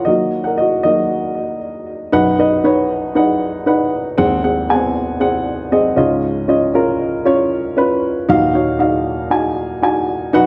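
A dark, woody upright piano plays alone from the start, carrying this dramatic, earnest pop excerpt in a straight 4/4 with mellow, short-sustained tones up front, a touch of tape echo and a moderate recital-hall reverb, moving from Ebm through B, Ab7 and Dbadd9 to a closing Ebmadd9, with a brief fill at 5.5 seconds.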